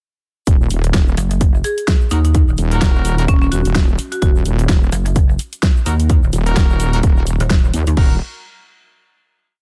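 This swaggering, aggressive bass house piece is one long drop, with a punchy, tape-warm kick driving four-on-the-floor under an overdriven big-room kit of closed and half-open hats, a huge snare backbeat and crashes, while a grainy egg shaker plays hand-played sixteenths in the background. Two heavy, saturated wobble basses sit up front with chorus and sidechain pumping, a detuned sawtooth-and-sine one changing its wobble speed and a pulsing pluck one from 1.2 seconds answering it. A woody marimba with hard mallets adds short delayed phrases until 4.3 seconds, and a loose, bright horn section with light vibrato and 12-bit sampler grit punctuates a dry mix with sparse echoing stabs before a final chord at 8.0 seconds.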